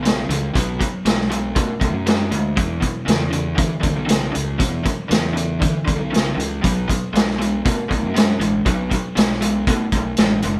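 This is a short excerpt of blues rock in the power-trio mold with a southern rock lean, set in B minor at 118 BPM in a straight 4/4, heavy and smoky in mood. A crunchy, overdriven electric guitar plays the picked riff, double-tracked and up front, moving from E5 to Bm, back to E5 and on to B5 by 6.6 seconds. Beneath it, a fingered electric bass carries a dark, round fuzz tone, heard both direct and through an amp. A vintage acoustic drum kit with a tight kick, medium-tuned snare and hi-hat sits up front, mid-forward with a rolled-off top. The trio sounds like it is playing live together in one studio room, with light reverb around them.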